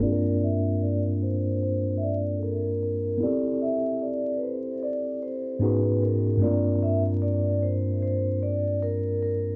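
Vinyl crackle and a moderate small-room reverb give this brief passage, cut from a longer piece, a hazy, worn sound, while a filter sweep runs across its full 9.6 seconds. It is reflective lo-fi hip hop in G dorian at 75 BPM in 4/4, with a lazy swing on the sixteenths. A clean, direct tine electric piano sits up front as the accompaniment, its mellow tone filtered and spanning from G2 to Bb4. Above it, a vibraphone struck with soft mallets carries the melody between A4 and E5, its metallic, ringing notes shimmering with a slow motor vibrato and sitting a little lower in level, also rounded off by a low-pass filter. The harmony moves from Gm7 to Am7 at 3.2 seconds, darkens briefly on Abm11 at 5.6 seconds, and settles back on Gm7.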